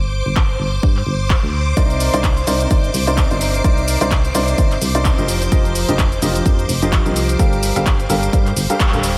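An up-front, clear upright piano carries the riff in this energetic, soulful piano house excerpt, entering at 1.8 seconds with a woody, slightly detuned tone, short sustain, diffuse ambient delay and sidechain pumping. Beneath it, shimmering vintage string-machine violins hold sustained chords with a slow attack, ensemble chorus and pumping, while a round, mellow FM bass with a fast, decaying attack anchors the low end from the start. At 128 BPM in 4/4 with a 57% swing on the sixteenths, a layered, punchy electronic kick recorded in a large room sits up front, entering at 0.4 seconds together with tape-tinged analog drum-machine handclaps, hi-hat and shaker. The harmony moves from G5 to F9sus4 and settles on Gm9 at 7.4 seconds, with a band accent landing at 8.8 seconds. A moderate, lush hall reverb soaks the mix in a dreamy haze.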